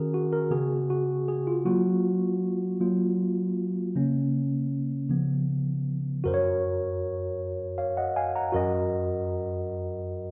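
A mellow tine electric piano carries this short gospel fragment entirely on its own, sounding clean, direct and up front across a span from F#2 to A#5. The mood is reverent and hopeful, moving slowly at 52 BPM in a straight 6/8 in F# major, tuned to A4 = 438 Hz. The harmony moves through D#m7, C#7sus4 and F#maj7 before leaning on A#m/C# and C#7, then settles on F# at 6.3 seconds, with D#m/F# following at 8.5 seconds. A second section begins at 6.3 seconds and runs to the close at 10.3 seconds. A lush large-studio reverb with a 1.2-second decay surrounds the piano, giving the feel of a live room while keeping its tone close and intimate.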